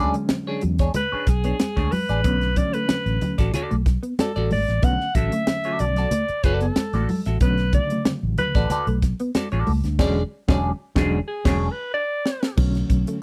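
Funk with a cool, funky swagger, this dry, close recording has a 1970s studio character and is cut from a longer piece. A tight drum kit with a high-tuned snare and a tight kick sits up front beside a bright, growly fingered bass, while soft-handed congas tap along in the background. A hollow-bodied semi-hollow guitar plays clean accompaniment through a phaser, a dark, mellow second guitar carries a riff coloured by ensemble chorus, and a barky, overdriven reed electric piano adds gritty stabs with a fast tremolo. From 1.0 seconds a breathy alto saxophone takes the solo in a vintage jazz style, its subtone and scooped notes floating over a harmony that moves from a rootless E13 to Bm7 and back. The band hits an accent from 10.0 seconds, and a drum fill at 11.9 seconds leads the groove back toward Bm7.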